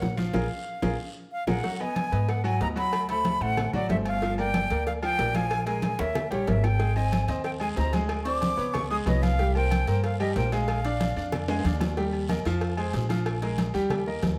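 A joyful, danceable salsa at 186 BPM opens with the full band striking an accent together, capped by a drum fill that leads into the main groove at 1.6 seconds. Up front, a breathy, bright concert flute carries the melody with vibrato and tongued, expressive phrasing, while a brilliant, polished grand piano with short sustain fills out the accompaniment. A woody, thumpy upright bass with gut strings plays pizzicato, sitting just as forward in the mix. Behind them, damped, thick-skinned congas, tight high-tuned bongos with cowbell, and ringing metal-shell timbales with agogo bells keep the rhythm section busy, and a raspy guiro drops out early and returns at 6.8 seconds. The flute finishes its line at 11.7 seconds, while another drum fill hands off to the closing chords under a light reverb, in a passage cut from a longer piece.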